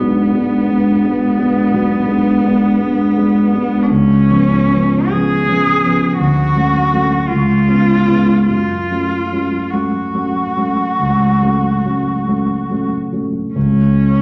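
A solo bowed cello and a dark concert grand piano begin together, opening a slow, elegiac romantic duo in F# minor that drifts between 43 and 58 BPM in a rubato 4/4. The cello carries a yearning melody in its middle register, its rich tone shaped by expressive vibrato and portamento, while the piano sits slightly louder beneath it with a mellow, smooth accompaniment of deep bass and short-sustained, vintage-tinged notes. The harmony moves from a diminished chord over B through C#7 and Dmaj7, back to C#7, and settles on F# minor at 8.5 seconds before the harmony falls away at 13.5 seconds. Both instruments sit up front in a reverberant recital hall with a 1.4-second decay, and a faint mains hum lingers underneath. The 14.2-second passage is cut from a longer piece.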